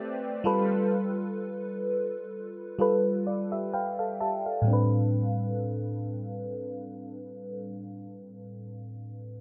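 A lush, dreamy FM electric piano with a soft pad layer sits up front in this moody, late-night R&B fragment in A minor at a slow 64 BPM with a light swing, its mellow chorus- and phaser-tinged chords shaped by a filter sweep and joined only until 0.9 seconds by a smooth, detuned analog pad, before the piano plays a fill over G9 from 3.3 seconds that leads into an Am11 at 4.7 seconds, all within a light reverb.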